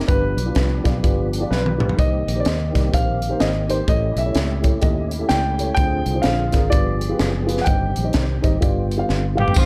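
Dark, lightly reverberant studio sound frames this solemn, fervent uptempo gospel fragment in C minor at 126 BPM with a swung feel, where a grand piano carries the melody over a woody, boxy upright piano, a clean tonewheel organ with slow rotary speaker and key click in the background, a punchy fingered electric bass, and a saturated, gritty fusion drum kit with bright cymbals and fills, before a mellow vintage horn section and a distant tambourine enter at 9.4 and 9.5 seconds.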